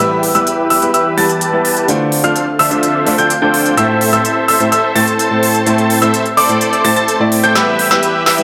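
Festival progressive house with an emotional, powerful feel, this short excerpt is a build-up where a warm, up-front concert grand plays accompaniment over a lush, airy unison pad and a very quiet detuned saw bass, while a bright grand piano with audible action noise spins high arpeggios through low-pass filtering and digital delay. A huge, thick supersaw riff sits up front under a filter sweep that runs the whole way, and a punchy, layered big-room kit with crisp hats enters at 0.2 seconds. A background riser and a drum fill arrive at 7.6 seconds as the chords move from E minor through D minor 7 and A minor back to E minor, all bathed in a lush hall reverb.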